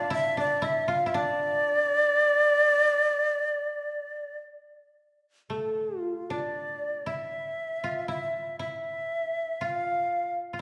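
Rubato and unhurried at around 51-61 BPM in 4/4, this solitary, still fragment of Japanese traditional chamber music in D hirajoshi sets an up-front, breathy bamboo shakuhachi melody with vibrato and a crisp, chiffy attack over a quieter second line on mellow, woody koto played with fingerpicks, the two sounding together from the opening until about 10.3 seconds in a wet recital-hall space.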